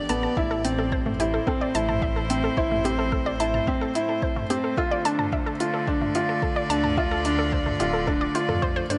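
A felt-muted upright piano sits up front with a boxy, mellow riff and audible action noise, echoed by digital delay, in this intimate, hypnotic piano-and-strings electronica fragment at 109 BPM in A minor, moving from Am to Dm at 4.8 s. Around it, a string quartet holds airy sul tasto chords and a lush, wave-folded unison pluck spins arpeggios through delay, while a dark, detuned saw bass rumbles underneath, all three pumping against the sidechain. An overdriven deep house kit of hi-hat and toms, joined by a deep electronic kick from 0.4 s to 8.7 s, drives the straight 4/4 groove inside a huge ambient reverb.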